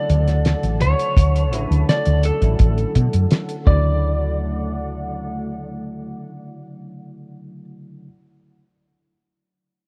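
Woozy and faded, this short vaporwave fragment sets a slightly broken-up lead guitar melody with analog delay over a bell-like tine electric piano, a warbling, detuned tape-like pad carrying 12-bit sampler grit, and a round, up-front fretless bass, while a cloth-damped kit of hi-hat and fat snare and a tight, dry kick have both stopped by 3.8 seconds, all in a rough cassette home-demo mix with small-room ambience.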